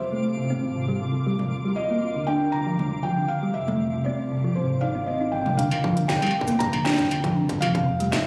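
Heard through a phone in a compressed, club-like hall with lush reverb, this wistful, intricate IDM fragment at 118 BPM in Eb major pairs a soft, felt-muted upright piano melody, gritty with vintage sampler crunch and tape echo, with up-front, tine-like thumb-piano-style synth arpeggios and a background glassy FM pad, both under a filter sweep, while a twinkling granular shimmer drifts until 5.6 s, a rumbling detuned saw bass holds the low end, industrial drums with a clanging snare and struck metal enter at 1.4 s, and a distorted electronic kick joins at 5.8 s.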